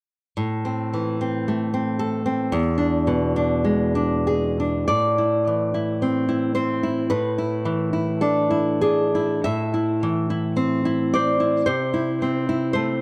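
A solo nylon-string guitar enters at 0.4 seconds, fingerpicked in a classical style and placed up front, its tone bright and acoustic. This romantic passage carries a passionate, melancholic mood, moving in a slow two-beat metre with a freely breathing rubato feel. The harmony leans between A minor and E7 before a second phrase begins at 4.9 seconds, where the guitar returns to A minor and passes through E5/A and A minor over C. The guitar spans from E2 up to E5. Light studio reverb surrounds it, and the overall production has a dark, warm character that sets off the guitar's clarity. The recording is cut from a longer piece and ends at 13.0 seconds.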